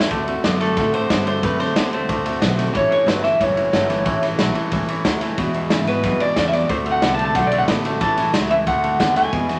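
A moderate studio reverb surrounds this rollicking, rowdy rockabilly excerpt at 182 BPM, where a gritty, saturated garage drum kit with a punchy kick and rolled-off top sits up front, a thumpy gut-string upright bass and a bright, compressed clean electric guitar riff move through D7, A7 and E7 chords, a dark, full-bodied dreadnought acoustic guitar with finger squeak picks its accompaniment in the background, and from 0.6 s a twangy, slightly broken-up lo-fi electric guitar through a small old amp carries the melody.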